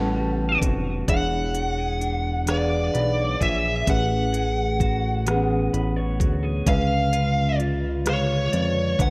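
Sultry and late-night, this slow six-eight R&B excerpt moves at 43 BPM over lush extended chords, from A13 to E13 and Amaj13 before landing on C#7b9 at 6.7 seconds. A bluesy, distorted lead guitar sits up front carrying the melody, while a slightly broken-up, lo-fi second guitar drifts through lush chorus and digital delay, a reedy electric piano shimmers with fast tremolo, and a fat, detuned analog bass anchors the low end. A very quiet tonewheel organ and mellow horn stabs colour only the opening moments, and the electronic drum kit enters at 0.6 seconds with a knocking kick, smooth hats, rim clicks and gated reverb, all set in a bright 1980s-style digital production with plate reverb.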